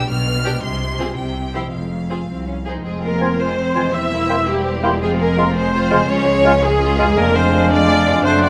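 A 6/8 pulse drives this stormy, urgent classical passage, cut from a longer orchestral work and carried by a full string body over a ringing, mellow concert harp that spins arpeggios in the background from the first moment. The very quiet, rich violin section sings the melody high above, while a distant, intense second violin line and up-front, focused violas weave accompaniment beneath it. Expressive cellos with a soft attack and a bright, distant double bass section anchor the low end with bowed, lush vibrato. At 2.8 seconds a tight French horn section slips in with sustained chords, and at 3.2 seconds the woodwinds join: a pure wooden baroque flute with crisp attack, a roomy warm oboe, a very quiet clear clarinet and a smooth-topped bassoon filling out the inner lines. Harmony leans on dark minor-key turns through a diminished chord near the end, and a moderate scoring-stage reverb gives the ensemble a spacious hall-like glow.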